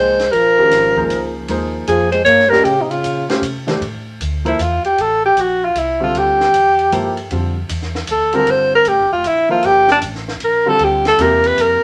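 Searching and spiritual, this modal jazz excerpt swings in three, with a breathy, whispered trombone playing a second line beneath the up-front alto saxophone until 3.3 seconds. From 3.8 seconds the saxophone takes a solo, its warm subtone and vibrato carrying the melody over baby grand piano accompaniment, a woody, thumpy upright bass played pizzicato, and a compact, dry cocktail drum kit with dark cymbals and a high-tuned snare. A moderate club reverb gives the group a club room sound.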